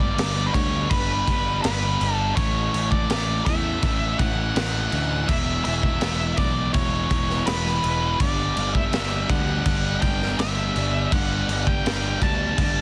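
A bittersweet, anthemic quiet-loud alternative rock excerpt at 82 BPM in straight 4/4 opens with the full band at once: a dark octave-fuzz lead guitar carries the melody with distortion and digital delay over a crunchy overdriven rhythm riff and a bright, scooped high-gain guitar sitting in the background. A growly picked electric bass underpins them, while a gritty, saturated garage drum kit sits up front with a punchy kick, a high-tuned snare and crash cymbal in a small room with a rolled-off top. The harmony moves from G to A at 2.4 seconds, to E at 5.3 seconds and back to G, all wrapped in light reverb and a dense, heavily limited modern master.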